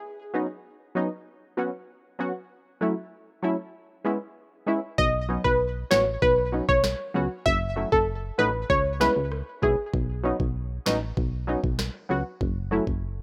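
A summery, sunny dancehall excerpt at 97 BPM in B mixolydian, opening with a punchy sawtooth chord stab that plays alone, up front with a filter sweep and chorus, over Badd9, F#m7 and C#m7 changes. At 5.0 seconds a bright, detuned analog pluck melody with a noise layer, chorus and digital delay enters alongside a round, mellow FM bass and an electronic afro-pop drum kit with a knocking kick, sharp snare and rim click, re-recorded in a large room. The pluck drops out at 9.8 seconds, and the whole has the dry, rough feel of a home demo mix.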